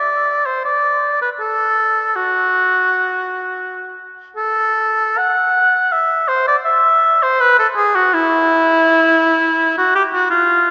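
Bathed in a wet church reverb with a 3.8-second decay, this serene, flowing fragment of a baroque-style classical fantasia features a mellow oboe playing solo and up front throughout its 10.7 seconds, with light vibrato, a soft attack and a smooth top, ranging from E4 to F#5 at a rubato 81 BPM in 4/4, tuned to A4 = 439 Hz.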